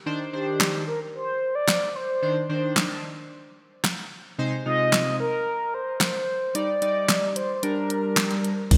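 This energetic, driving dance-pop excerpt opens with a glossy, retro chorused polysynth laying down pulsing sustained chords with sidechain pumping, soon joined by a mellow, horn-like synth lead carrying the melody through chorus and delay with a warbling vibrato. By 0.6 seconds a punchy pop drum kit arrives up front, its fat snare, handclaps, hi-hat, crash and kick bathed in gated reverb for a layered, produced electronic hit. The harmony moves from Cmadd9 through Ab/C and Ebmaj7 to Gm, keeping a driving lift under the vintage lead. In the final moment at 8.7 seconds, a deep, round analog bass lands on C2 and a detuned, phased supersaw swell enters in the background, both carrying sidechain pumping. The bright 1980s-style digital production sits in a lush hall reverb that gives the whole a polished, nostalgic sheen.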